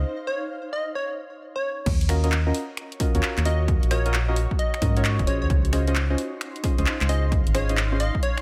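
Deep, mellow chord stabs with lush chorus and delay open this moody UK garage excerpt, joined at once by a hollow, organ-like FM bass sitting up front and a blurred granular pad that pumps under sidechain beneath its own built-in reverb. A catchy, plucky unison lead with a cassette-tape tint and delay enters at 0.3 seconds, hovering in a narrow high range. The opening break rests on a Dbsus2 chord until 1.9 seconds, when the drop arrives with a dry, punchy analog kick and a layered garage kit of hi-hat, handclaps, finger snaps and crash cymbal. The skippy two-step groove runs at 132 BPM in 4/4 with a 65% swing on the sixteenths, moving through Ebm7 and then Dbmaj9 at 5.5 seconds in E-flat dorian, tuned to A4 = 441 Hz. The mix is close and dry overall, with the dark, percussive bass and the kick carrying the weight while the pad stays a faint, evolving haze in the background.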